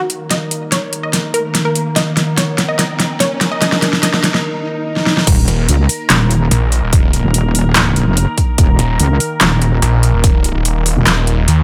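A bright, detuned unison pluck opens with a short melody through digital delay, over an evolving wavetable pad that morphs and warbles with phaser, its own reverb and sidechain pumping, while filter sweeps on both build tension. Overdriven big-room dance drums with a huge snare, metallic hats, handclaps and crash cymbal play a fill, and an electronic riser sits in the background before a brief break, during which a swell takes over. At 5.3 seconds the heavy wobble dubstep drop arrives in a half-time feel: a punchy, overdriven electronic kick enters alongside a resonant, chorused wobble bass with a saturated sawtooth tone. Moments later a snarling distorted saw bass joins, its moving notch giving it an aggressive, growling bite. The mood is chaotic and menacing, with the basses and drums up front in a lightly reverberant space. This cut from a longer piece ends with the pad, drum kit and saw bass still sounding.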